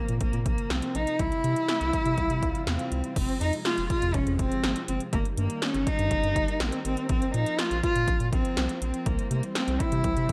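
A woody, bowed solo cello with vibrato and delay carries the melody over a nocturnal, melancholic 122 BPM synth-pop passage in F minor, backed by punchy, gated 80s electronic drums with metallic hats, a deep, round, wave-folded analog bass, vintage organ-like string chords with ensemble chorus sitting in the background, and a very quiet electronic swell at 2.2 s before the harmony settles on Fm at 3.2 s.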